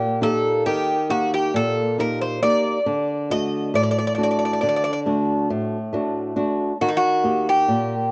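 Melancholic and reflective, this short cut from a longer Greek folk piece moves in 9/8 at 136 BPM counted in eighths, with a straight feel and tuning set slightly low at A4 = 437 Hz. A Greek bouzouki carries the melody between Eb4 and Eb5, its picked double strings sounding bright and metallic, with some courses doubled at the octave. Beneath it, a flamenco guitar supplies fingerpicked accompaniment from A2 to G4, its fresh strings giving a warm, flamenco-flavoured tone. Both instruments sit up front and play together for the full 8.1 seconds, over a harmony that rests on Eb, shifts to D at 2.9 seconds and returns to Eb at 6.8 seconds. A light reverb surrounds them, and the sound carries the worn character of old cassette tape, with a warbly drift in pitch that deepens the wistful, faded atmosphere.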